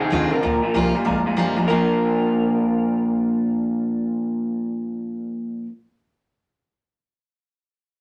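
A rollicking, upbeat swung rock fragment opens with an up-front, slightly broken-up electric guitar riff and a twangy, lo-fi lead guitar melody over a full-bodied picked acoustic guitar with audible finger squeak, a detuned, jangly honky-tonk piano in the background, and a thumpy, woody pizzicato upright bass, all set in a moderate studio reverb.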